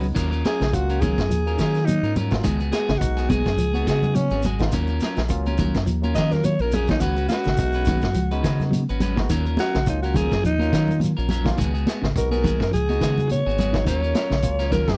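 A breathy, raspy alto saxophone solos up front from 0.5 seconds in this intense, funky afrobeat excerpt, riding a swung groove over Ebm9 and Db7sus4 chords with a round, deep fingered dub bass, a gritty vintage drum kit with dark cymbals, a clean picked guitar playing arpeggios, twangy spring-reverbed guitar stabs at the edge of break-up, a barky, lightly overdriven tine electric piano, and ringing high-tuned congas and a grainy shekere in the background, the whole captured in a dry, close 1970s-style studio sound.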